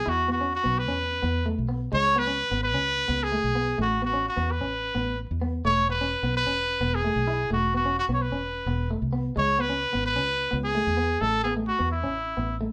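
Carefree and joyful, this short highlife guitar band cut in E major moves at a straight 129 BPM, with a bright, up-front pop-style trumpet carrying the solo melody over a picked, compressed electric guitar at the edge of break-up and a round, dark, foam-muted fingered electric bass, all captured as a band playing live in one room with a wet studio reverb.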